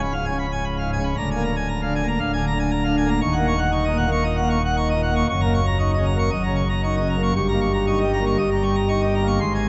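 A classical organ toccata, this short passage, cut from a longer piece, sounds majestic and jubilant in a steady, straight 4/4. A single pipe organ plays alone for the full 9.7 seconds on a plenum registration with mixtures, giving a full, brilliant tone in a baroque voicing that sits up front. Its range reaches from C#1 at the bottom to C#6 at the top. The harmony moves from C#7 through A#7/D and D#m7 to Ebm7/Gb, arriving on Eb7/G near the end. The organ rings out in a vast, echoing cathedral whose 6.5-second tail blooms long after each chord, while the upper treble stays softened.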